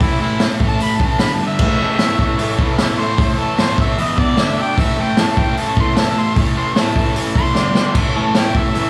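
Rowdy and raw, this garage rock excerpt charges along at 151 BPM in A mixolydian, with a clear harmonica soloing on top from the start, its scooped notes and light vibrato roughened by overdrive and slapback echo. Beneath it, a bright, double-tracked fuzz guitar riff and a punchy vintage drum kit with dark cymbals sit up front, and a buzzy combo organ with heavy vibrato joins in the background at 1.6 seconds holding sustained chords. The drums play a short fill at 7.6 seconds, and the whole performance comes across as a live gig heard through the venue's PA, with club ambience and little reverb.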